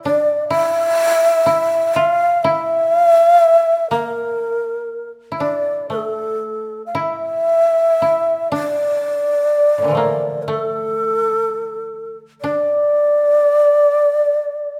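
This is Japanese traditional chamber music, calm and austere, moving in a loose rubato feel over a 4/4 metre. An end-blown bamboo shakuhachi carries the melody up front throughout, its long, breathy tones opening with a soft attack and a touch of chiff, colored by vibrato and a slightly unsteady delivery that gives it a human quality. Beneath it, a koto played with fingerpicks supplies a second line in a lower register, its mellow, woody, dry voice sitting well back in the mix. Light reverb adds a gentle sense of space. The music shifts into a new section at 8.5 seconds, and the recording is cut from a longer piece, ending at 14.8 seconds.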